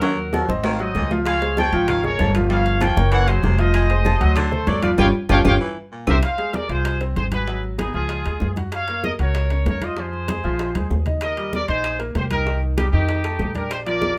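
Salsa in F minor at 193 BPM, driving and danceable, with an up-front trumpet section playing the melody with vibrato over a brilliant upright piano with audible action noise, a thumpy gut-string upright bass, a raspy, distant baritone saxophone second line that drops out at 6.1 seconds, ringing metal-shell timbales, compressed high-tuned bongos, thin-skinned congas and very quiet claves, with drum fills and a band accent leading into the second section at 6.2 seconds.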